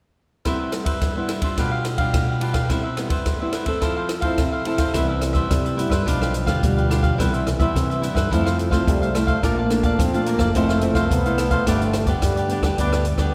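A straight 4/4 pulse at 107 BPM drives this playful, lively stretch of samba and choro in C major. A compact cocktail drum kit of hi-hat, kick, ride and rim click carries the pulse from the start, its dark cymbals and tight kick sitting dry and up front. Alongside it, a crisp, picked cavaquinho and a small, fingerpicked nylon-string guitar with fresh strings share the accompaniment over Cmaj7, G7/B and Fmaj7. At about 4.9 seconds a bright, fingered electric bass joins with an amped envelope-filter tone, and at 5.0 seconds a mellow trombone adds a jazz-style second line full of soft attacks, scooped notes, vibrato and a smooth top while the chords move through Bbmaj7 and Fmaj7 to G. Set in a church or concert hall, the passage carries a wet, lingering reverb and is cut from a longer piece.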